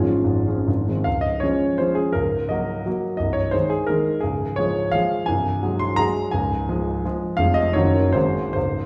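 Dotted rhythms in a triple-time step, pushed and pulled by rubato, drive this graceful, proud romantic classical dance for solo concert grand piano, whose clear tone and deep bass sit up front within a wet recital hall reverb, with a brief opening giving way at 1.1 s to a longer strain that circles home to the tonic chord before closing on a dominant seventh, cut from a longer piece.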